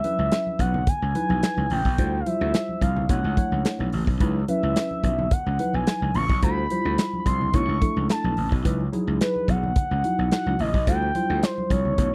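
A dry, close studio sound in the 1970s style frames this slick, danceable slice of early-eighties boogie funk at 108 BPM in a straight 4/4, cycling through C#m11, Dm11 and Bm11 chords. A punchy acoustic drum kit with handclaps, hi-hat and a medium-tuned snare sits up front alongside a very quiet, ringing conga part, while a gritty, growly overdriven slap bass enters at 0.2 s. A worn, slightly out-of-tune tine electric piano with phaser supplies mellow accompaniment beneath a smooth sawtooth-and-triangle portamento lead, shaped with vibrato, chorus and slapback echo.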